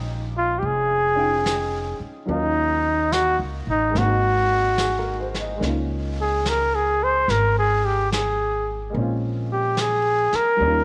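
A clear flugelhorn carries the melody up front from 0.4 seconds, with light vibrato and scooped notes, in an intimate, tender jazz ballad at 72 BPM with a swung feel, cut from a longer piece. Beneath it, a woody, slightly detuned upright piano comps through chords such as Bbm11, Ebm7, Ab9 and Db6, while a growly pizzicato upright bass anchors the low end and a vintage brush kit with a rolled-off top enters at 0.6 seconds on snare and hi-hat. The whole is bathed in a moderate echo chamber reverb.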